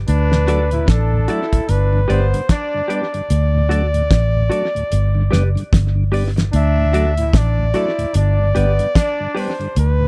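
A warm flugelhorn carries the melody in this laid-back, meditative roots reggae excerpt, its light vibrato and scooped notes trailing off into dub echo, while a growling, raspy trombone sits lower down as a second line. Underneath, a vintage muted fingered electric bass sits up front with a dark, round, foam-muted tone, and a cloth-damped drum kit gives a fat snare, tight kick and hi-hat with a rolled-off top and tape echo. A mellow tonewheel organ with key click and slow rotary speaker fills the middle, and a clean, compressed semi-hollow guitar enters at 0.5 seconds, colored by lush chorus and dub echo. The groove moves at 74 BPM in 4/4 with a gentle swing on the sixteenths, alternating between D and G chords. The sound is dry and close, like a small 1970s studio room.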